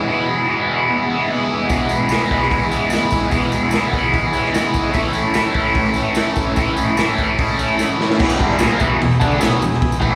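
Rowdy and swaggering, this garage rock snippet charges along at 148 BPM in E major. An up-front, double-tracked overdriven guitar riff with phaser and slapback echo opens alongside buzzy vintage combo organ chords held in the background. At 1.7 seconds a gritty, saturated drum kit with dark cymbals and a tight kick enters together with a jingly tambourine, with a transistor organ fill at 7.4 seconds and a drum fill at 7.8 seconds, all heard as a live gig through the venue's PA with club-style reverb.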